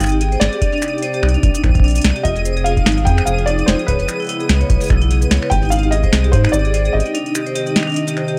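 A felt-muted upright piano with audible action noise carries a soft, intimate melody through 12-bit sampler grit and delay, over a warbling, nostalgic tape-like pad, ringing hard-mallet vibraphone arpeggios with delay, and a crisp, metallic analog drum machine of snare, hi-hat, cabasa and finger snaps in this eerie, cerebral, swung IDM excerpt. A rubbery, hollow square bass with tube saturation sits up front, an overdriven deep electronic kick joins at 0.6 seconds, and a pulsing, detuned gated texture hovers in the background. The chords move from Abmaj7 through Cmadd9, Fm7 and Dbm7, and a break begins at 7.1 seconds, just after the bass stops at 7.0 seconds.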